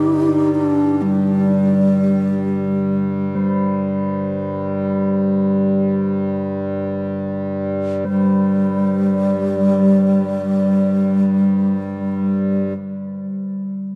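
From the first moment, a hollow, airy bass flute carries the melody up front over a reedy pedal harmonium drone and the metallic ring of a bronze singing bowl, all three sounding together throughout this short cut from a longer piece. The mood is haunting and spacious: meditative world music unfolding in free time, tuned slightly low with A at 437 Hz. The flute has a crisp attack, lifted highs and vibrato, while the harmonium holds a low, breathing drone that sits close. The bowl, struck with a wooden striker, rings with slow beating and a boxy small-room character. A long, wet cathedral reverb gives the production a dark, warm cast, and the music moves into a new passage at 8.1 seconds.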